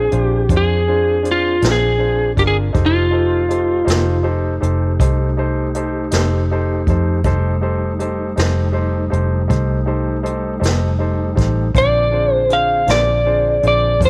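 A small, roomy sound frames this soulful, gritty slow blues excerpt in 12/8 at 53 BPM in F mixolydian, where a slightly broken-up, up-front lead guitar sings the melody from 0.0 to 4.3 seconds and returns at 11.8, over clear grand piano accompaniment, flute-like tonewheel organ chords turning through a slow rotary speaker in the background, a round, foam-muted fingered bass, and a distant brush kit with a boomy kick, moving from Bb7 to F7 and back to Bb7.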